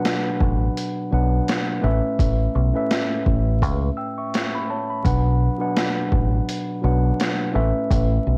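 Gritty and tough, this short boom-bap hip-hop clip in B minor moves at 84 BPM with a swung 16th-note feel, as a mellow tine electric piano, filtered and cassette-softened, cycles between Bm and Aadd9 from the start. A compressed, pitched-down sampler-style drum kit enters at 0.1 seconds with a thumpy kick, high-tuned snare and hi-hat, its tape-worn hits carrying the air of a large room. A deep, dark, round dub bass joins at 0.4 seconds and sits loudest in the mix, punchy and direct, while the home-cassette recording stays dry and dusted with vinyl crackle.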